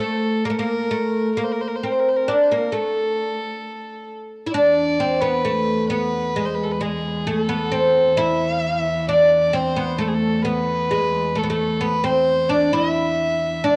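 A home cassette recording with light reverb and small-room ambience carries this longing, melancholic Arabic excerpt in 10/8 at 132 BPM (eighths), where a woody, deep, plectrum-plucked fretless oud with double strings leads the melody up front in A maqam kurd while a pure, floating bowed violin played sul tasto shapes a soft-attacked second line, and at 4.5 s the music turns to E maqam hijaz as a rich, focused cello enters with a vibrato drone on E2.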